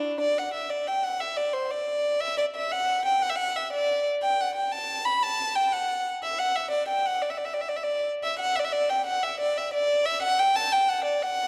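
A single bowed violin carries this brief medieval-styled fragment alone from start to finish, its rich tone placed up front and close enough to feel intimate. The player uses light vibrato, a soft attack and an airy bow played sul tasto, giving the line a gentle, breathy character that still sounds festive and ancient. The melody moves in a lilting 6/8 metre with a straight feel, ranging from D4 up to B5. A phrase is stated and then begins again at 8.2 seconds before the recording cuts off at 11.5 seconds, as it is taken from a longer piece. The violin sits in a dark production bathed in a wet concert hall reverb with a long decay, which surrounds the close, solitary instrument with spacious resonance.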